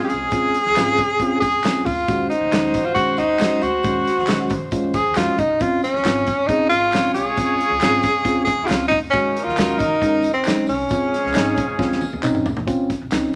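Uptempo 1960s-style soul at 136 BPM in 4/4 with a straight feel, set in Db major, with an uplifting, warm mood in this short section cut from a longer piece. A breathy tenor saxophone carries the melody up front, its soft attack, vibrato and scooped notes giving a jazz-style solo voice, while a horn section plays a tight, smooth-topped second line with light vibrato and octave doubling. A mellow, clean tine electric piano supplies the accompaniment over chords moving between Dbmaj7 and Ab7sus4. Beneath them, a woody, growly pizzicato upright bass sits in the background, and a natural country drum kit with a punchy kick, medium-tuned snare, hi-hat and toms sounds airy and polished, adding a drum fill from 11.8 to 12.7 seconds. Tambourine, egg shaker and group handclaps add close acoustic percussion in the background, and a moderate large studio reverb fills the room.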